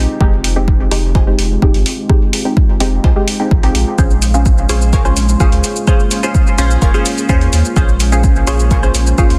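Dub techno at 127 BPM in a straight 4/4, this short cut from a longer piece feels cavernous and hypnotic, moving from Fm7 to Bbm7 at 4.0 seconds. An overdriven, layered kick sits up front from 0.2 seconds, joined at 0.4 seconds by metallic electronic hi-hats and shaker. Beneath it, a clean, smooth sine sub bass holds sustained low notes, pumping with sidechain compression. A muted, detuned sawtooth chord stab carries chorus, phaser and dub echo, its filter sweep giving it an evolving character, while a moody pad with a slow attack and long release spreads dark sustained chords through its own chorus and reverb. High above, a very quiet wave-folded wavetable stab adds crisp, plucked accents with a moving notch from 1.1 seconds, all sitting in light reverb under a dense, heavily limited master.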